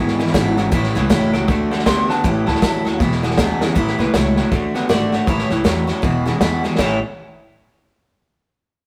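A vintage drum kit sits up front in this rollicking, retro rockabilly fragment, its punchy kick, medium-tuned snare, hi-hat and dark crash cymbals filling a small, pumping room, with a fill at 3.6 seconds leading into the second passage. Just as prominent is a twangy, lo-fi electric guitar riff through a small old amp, slightly broken-up and picked low. Beneath it, a pizzicato upright bass with gut strings gives a woody, thumpy pulse, while a jumbo steel-string acoustic guitar plays a full-bodied picked accompaniment. Further back, a second electric guitar carries the melody up high, its bright tone colored by a phaser. The swung groove cycles through A, D and E chords, and the rough rehearsal-room sound has light reverb and saturation.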